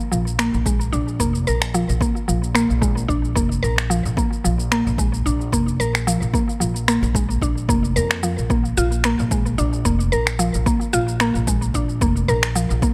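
Over a lightly swung groove of overdriven electronic shaker and finger snaps, with a punchy, overdriven electronic kick arriving at 0.7 seconds, this mystical, warm organic downtempo fragment cut from a longer piece sets a round, detuned FM mallet-like synth pluck playing up-front chorused, tape-echoed arpeggios against a woody, growly pizzicato upright bass, all in a lightly reverberant room.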